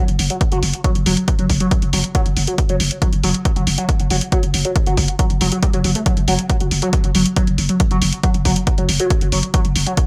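Driving peak-time techno at 138 BPM, dark and intense, cut from a longer piece, where a gritty, screaming overdriven synth lead with vibrato riffs up front through phaser, subtle chorus, delay and sidechain pumping over a growling, buzzy 808-style bass on F#1 with tube saturation and a low-pass filter, sidechain-pumped electronic hi-hats, and a dry, punchy electronic kick that enters at 0.4 seconds, all set in light digital reverb with a bright 1980s-style sheen.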